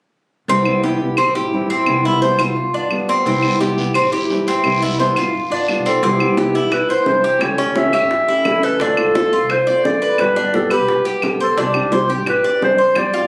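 Danceable and relaxed, this Cuban son and guajira groove in C major moves at 173 BPM, with a fingerpicked nylon-string guitar (finger squeak audible) and a warm, metallic Cuban tres picking arpeggios on its doubled strings up front, over a dark, thumpy pizzicato upright bass with gut strings and the woody click of claves. A raspy guiro joins briefly from 3.3 to 6.0 seconds, and just before it drops out, a mellow, close-miked clarinet takes up a classical-style solo melody at 5.9 seconds while round, low-tuned bongos sit in the background. The sound comes across as a phone recording in a small room, with club reverb and compression.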